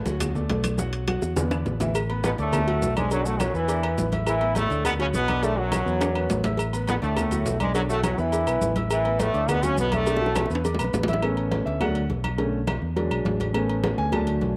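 Festive and sunny, this salsa excerpt moves at a brisk 207 BPM in A major, cut from a longer piece and captured as a home recording on cassette with moderate spring reverb and a small room around it. A clear, polished baby grand piano carries the accompaniment throughout with a cassette-tape tint, while a round, amped fingered electric bass sits up front beneath it. The percussion is layered: ringing congas and tight, high-tuned bongos and cowbell stay in the background, ringing metal-shell timbales and agogo bells sound close and dry, woody claves are very quiet, and grainy maracas play until 11.2 seconds. A brilliant, punchy trombone section with vibrato takes the melody from 2.3 to 10.5 seconds, tight and up front over chords moving through D, Bm7, Asus2 and E5, with drum fills marking the turns. From 11.2 seconds the piano steps out for a solo over Aadd9, D, Bm7 and E7 to close the excerpt.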